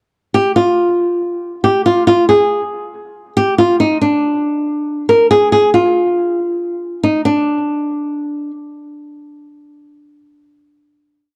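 Set at 139 BPM in 4/4 with a half-time feel, this short hip hop piece moves with a slow pulse that feels menacing and cold. A fingerpicked flamenco guitar carries it alone, entering at 0.3 seconds and playing a looping melody between D4 and Bb4, repeated like a sampled loop. Its acoustic tone is warm and up front, with the clarity of fresh strings. A worn, warbling cassette-tape character gives the sound a drifting, unsteady pitch, and a moderate studio reverb adds a sense of room. The hook runs until 7.2 seconds, when the piece settles on a final note and the guitar stops at 8.5 seconds.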